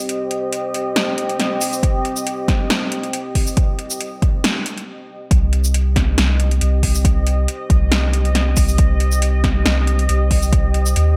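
Cavernous and heavy, this deep dubstep excerpt carries a light reverb and a half-time, gently swung feel. A dark, moody pad of detuned sawtooth voices with a sub octave holds sustained chords throughout, its slow attack and long release softened further by chorus and its own reverb. Beneath it, a round, soft sub bass built from triangle and square waves sits up front with a fast attack and long, sustained notes. An overdriven drum kit, re-recorded in a large room, with a punchy snare, metallic hi-hats and shaker plays across the clip, and an overdriven electronic kick with a deep, layered thump, also re-recorded in a large room, joins at 1.8 seconds. The opening builds up until a brief stop at 4.9 seconds, and the drop lands at 5.3 seconds, carrying the brooding weight through to the end.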